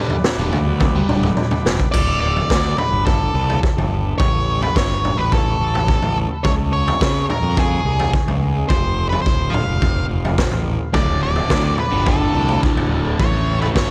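Psychedelic rock in a dark, hypnotic groove, where a gritty, saturated garage drum kit and an overdriven, up-front fuzz bass carry the whole stretch while a dark octave-fuzz lead guitar takes the melody from 1.9 seconds through analog delay, and a bright, double-tracked fuzz guitar riff with phaser and a very quiet, buzzy vintage combo organ appear only at the opening and return at 10.9 seconds, all in an echo-heavy small room with a faint mains hum.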